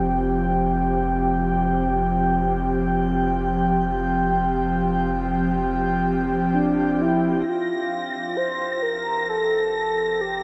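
Peaceful and luminous, this free-time ambient excerpt opens on an airy, breathy pad holding an Fsus2 chord, with a filter sweep through the first 7.5 seconds over a deep, round sub bass, before a velvety, warbling vintage synth lead enters at 6.5 seconds, a dark, lush bowed violin section adds high texture from 7.5 seconds, and a barely audible organ-like drone surfaces at the very end, the whole piece sitting in a huge, wet reverb with shimmer on the pad, lead and violins.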